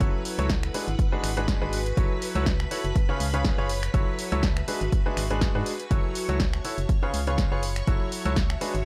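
Soulful and bittersweet, this piano house passage moves with a gently swung 4/4 groove as it cycles through a minor progression of F#m7, G#m7b5 and C#7 chords. Up front, a bright, worn grand piano plays a short-sustained riff treated with digital delay and sidechain pumping, while an organ-like FM bass with a hollow, percussive, dark tone anchors the low end. A punchy electronic kick sits forward in the mix, joined by an analog drum machine supplying finger snaps, hi-hat and snare, both re-recorded in a small room. Behind them, a shimmering, full-bodied string machine holds sustained violin chords with ensemble chorus, and an airy, breathy pad adds a warbling, detuned texture with chorus, both of them pumping with sidechain compression. The sound is dry with little reverb, and every part enters at the very start of this roughly 8.8-second section cut from a longer piece.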